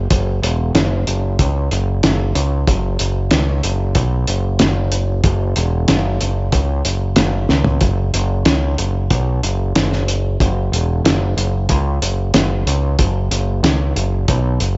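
A straight 4/4 groove in common time drives this short psychedelic rock passage, with a hypnotic, trippy mood. A growling picked electric bass opens at 0.0 s, its overdriven, punchy tone sitting low and up front in the mix. The cloth-damped drum kit joins at 0.1 s with hi-hat, kick, snare and toms. Its sound is thuddy and muffled, with a fat snare, a tight kick and a gritty, saturated, lo-fi character from a small room. A brief drum fill at 7.5 s breaks the pattern before the groove carries on. The recording is dry and dark, with its highest frequencies shaved away, and the passage is cut from a longer piece.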